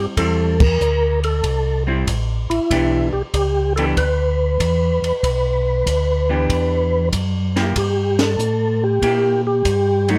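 Late-night and smoky, this short soul jazz organ trio excerpt swings in 4/4, with a soft, flute-like tonewheel organ carrying the melody through slow rotary speaker and chorus vibrato, a clean hollow-body electric guitar comping beneath it, a round, lightly overdriven organ bass line with key click, and a compact cocktail kit with a high-tuned snare and punchy kick entering at 0.2 seconds, the band hitting accents at 0.5 and 8.1 seconds over chords moving from Am7 to Em7 to Gm69 in a close, dry, detailed sound.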